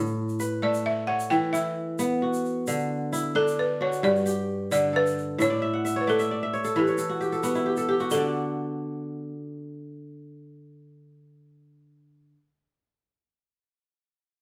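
Up front, a bright, ringing fingerpicked kora spins flowing arpeggios through this warm excerpt of West African string and xylophone music in 12/8, joined by a woody, buzzing balafon melody played with hard rubber mallets and a grainy tube shaker that drops out at 8.3 seconds, all set in a moderately large studio reverb as the band plays live in one room, with a kora fill from 5.4 seconds.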